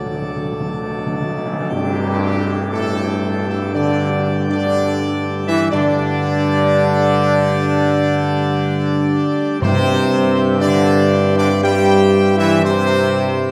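A clear, close-miked trumpet section carries the melody over a dark, distant French horn section, a warm trombone section, a mellow tuba bass and a brilliant plenum pipe organ in the background, in this triumphant, majestic classical fanfare at 60 BPM in 4/4, cut from a longer piece. Timpani open with a fill before the full ensemble strikes an accent at 1.7 s, where the harmony moves from D to Gsus2 and a bright tam-tam shimmers in the background until 5.7 s. The timpani return at 9.6 s as the chords settle on C/G, all bathed in the wet reverb of a recital hall.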